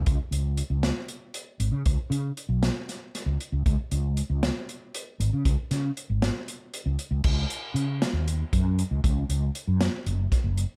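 A lightly reverberant, up-front recording of brooding, tense progressive instrumental music in 7/8, where a dark, round, amped fretless electric bass treated with ensemble chorus plays alongside a smooth vintage drum kit with dark cymbals, a medium-tuned snare, a tight kick and a rolled-off top, shifting into a new section at 7.2 seconds in this short cut from a longer piece.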